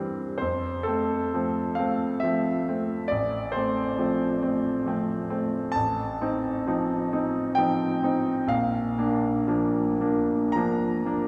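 Classical romantic nocturne for solo piano in F major, dreamy and tender, moving at a slow 67 BPM in 3/4 with uneven, rubato beats. A bright grand piano with a brilliant, smooth, vintage tone and long sustain sits up front, ranging from A1 to Bb5 as the harmony moves from F through F/A and F7/A to Bb at 8.5 seconds. A wet church reverb with a 3.0-second decay surrounds this short excerpt, cut from a longer piece.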